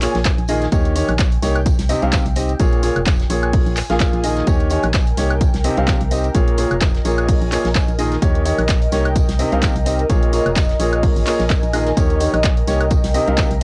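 A clear, woody upright piano sits up front with a riff over a cycle of Bbm7, Eb7 and Cm chords, colored by tape echo, cassette grit and sidechain pumping, in this soulful, bittersweet piano house cut in Bb dorian at 128 BPM with a 16th-note swing. A hollow, organ-like FM bass pumps beneath it while an ethereal, airy pad with ensemble chorus and its own reverb breathes in the background. A punchy analog kick drum arrives at 0.3 seconds alongside a tape-warmed drum machine of handclaps, hi-hat and woodblock, with a very quiet, loose acoustic kit adding hi-hat, snare and tambourine, all within a lightly reverberant home cassette recording.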